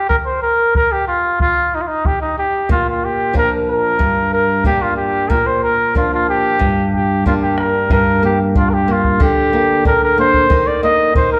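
This Andean folk excerpt from a longer piece carries a wistful yet festive mood in a straight two-beat metre. A mellow, punchy trumpet with a vintage, classical-style tone takes the solo melody from the very start, sitting up front with a slapback echo. The bombo adds round, acoustic percussion with a small-room character throughout. At 2.7 seconds a boxy flamenco guitar enters up front, fingerpicked with audible finger squeaks, as the harmony moves back and forth between Bb and G minor. A new section begins at 7.9 seconds, and the whole ensemble rings in the wet reverb of a recital hall.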